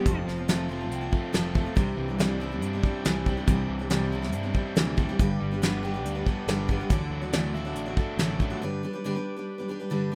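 A rough home-demo mix with light reverb and a touch of studio ambience frames this hopeful, jangly folk and heartland rock excerpt, where an up-front, full-bodied jumbo acoustic guitar picks its accompaniment over a small-room brush kit with a fat snare and tight kick, a direct, warm fingered bass, a very quiet reedy tonewheel organ holding sustained chords, and a crunchy, double-tracked overdriven guitar riff with spring reverb that drops out at 8.6 seconds, as the chords move from F through Cadd9 and G to Dadd9 before settling on G.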